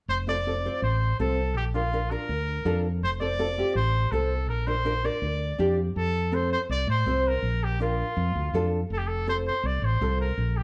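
A clear trumpet with light vibrato carries the roomy, up-front solo melody in this festive, danceable latin excerpt at 163 BPM in F major, set over a growly, round fingered electric bass and a dark, full-bodied fingerpicked nylon-string guitar that move between F and Bb chords, with the band playing live in one room wrapped in a wet stone reverb.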